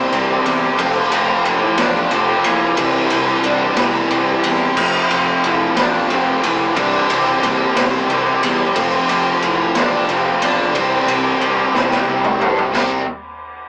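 Cathartic and restless, this 13-second excerpt of quiet-loud alternative rock sways in a slow 6/8 at 60 BPM in C major, with a raw garage drum kit up front, saturated and gritty with a punchy kick, joined by a growly fuzz bass, two bright fuzz guitars and a very quiet, double-tracked biting overdriven guitar riffing over C and F, while a lead guitar through a small cranked amp carries the melody from the background, all captured in a rough rehearsal-room sound with small-speaker character and a drum fill from 11.7 to 12.7 seconds.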